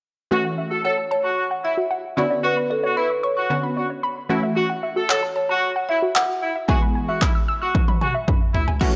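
A punchy analog drum machine enters at 5.1 s with kick, handclaps, crash and toms, rolling into a fill at 7.8 s, driving this bittersweet, energetic dance-pop excerpt in F# minor at 113 BPM in straight 4/4. From the start, a clear, vintage horn section carries the melody, joined at 0.9 s by a woody marimba, while a bright, detuned unison pluck with phaser comps beneath and a warbly, lo-fi pluck spins arpeggios through tape echo, several parts pumping to the sidechain over F#m7, Bmadd9 and E chords. At 8.8 s a smooth supersaw and a clean, direct-recorded electric guitar with lush chorus appear briefly, all set in a moderate hall reverb with a dry, gritty hardware character.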